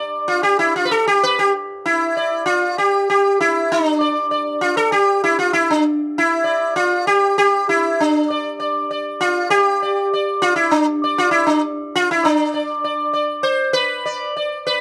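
Introspective and solemn, this fragment of a longer Indian classical piece in raga Bageshri on D, tuned to A4 = 445 Hz, features a solo acoustic sitar, bright, buzzing and shimmering with ringing sympathetic strings, placed up front within light reverb and a dark production. The plucked lines range from D4 to D5 in a straight 7/4 at 98 BPM that gradually speeds up, moving into a new section at 12.2 seconds before the cut at 14.8 seconds.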